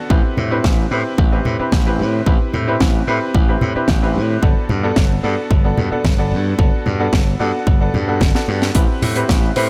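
A cosmic, sensual nu-disco groove in a straight 4/4 metre, this excerpt is taken from a longer piece and rests on a smooth move from Am7 to Gmaj7 and back. A bright grand piano with a brilliant, worn character and short sustain sits up front as accompaniment, given a pumping sidechain feel and an analog delay. A punchy electric slap bass, direct and driven by tube saturation, shares the foreground with a layered, tape-warm electronic kick drum. A tight funk kit with a high-tuned snare and hi-hat adds a mid-forward small-room snap, with a drum fill at 8.3 seconds, while low-tuned congas with a thick skin and soft hands sit in the background. At 9.6 seconds a soft, round, octave-layered synth lead with a sub octave, vibrato, chorus and phaser appears briefly on a single high note, all within a light reverb and small room ambience.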